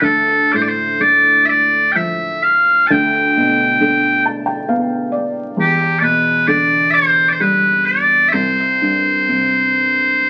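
In a free, rubato 3/4 that drifts between 57 and 68 BPM, this longing, mournful Celtic slow air in D dorian sets loud, piercing bagpipes up front carrying the melody over a dark, felt-muted upright piano whose short-sustained chords, audible action noise and brief fills at 3.8 and 9.8 seconds move from Dm through G/D and Em7 to C5, all heard through moderate studio reverb and the crackle of a very old 78 rpm record in a short cut from a longer piece.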